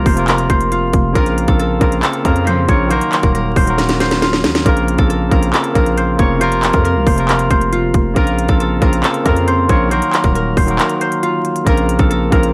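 Wrapped in vinyl crackle, this dark, melancholic half-time trap hip hop excerpt at 137 BPM in Bb harmonic minor sets a ringing, fingerpicked concert harp melody with digital delay over a bright, barky tine electric piano and a growling, buzzy 808-style bass, while an up-front trap kit of hard-clipped kick, sharp snare, crisp hats and handclaps adds a fill at 3.8 s and a break at 10.8 s, and a soft, floating bowed string section stabs briefly in the background at 2.5 s.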